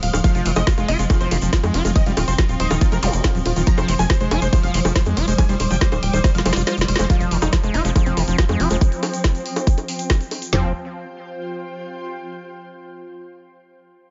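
Psychedelic trance in F minor at 140 BPM, alien and psychedelic, where a punchy, up-front sequencer bass and a front-placed electronic kit with tight kick and woody snare push under a detuned supersaw stab melody with phaser and tape echo, a squelchy, distorted acid bass riff, a swarming background drone whose filter sweeps from 7.1 seconds, a second kit with bright hats and bongos, a grainy tube shaker, a brief metallic wobble bass line, a lone zap at 3.0 seconds, a drum fill with the kick dropping out before a band accent at 7.0 seconds, and a blurred granular cloud pad drifting in at 8.9 seconds, all in a digital ambience.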